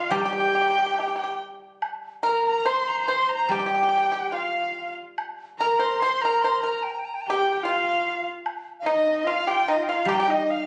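A reedy, buzzing dizi carries a wistful, tender rubato melody from the first moment, joined at once by a nasal, up-front erhu, a husky horsehead fiddle and a dry, fingerpicked pipa on second lines, while a silvery guzheng and a woodblock with a small-room sound enter just after to accompany in this traditional Chinese chamber piece, cut from a longer work and captured on a phone in a recital hall with a club-like reverb.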